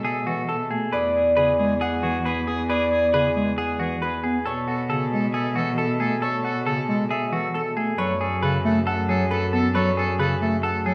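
A straight 4/4 pulse at 136 BPM drives this urgent, hypnotic piece of minimalist classical pattern music in B dorian, cut from a longer work. A ringing, fingerpicked Celtic harp carries the melody in its middle register, while a semi-hollow electric guitar adds clean, compressed, picked arpeggios with a hollow-body character. Beneath them, a rich, bowed solo cello with vibrato holds a smooth, even bass line up front, and a mellow bass clarinet with a smooth top joins at 0.3 s as a classical-style accompaniment. A bright oboe with light vibrato sits distant and roomy, tracing a punchy second line within a narrow range. The harmony moves from B9sus4 through E9 and Bm11 to F#m9, all bathed in the reverberant air of a recital hall.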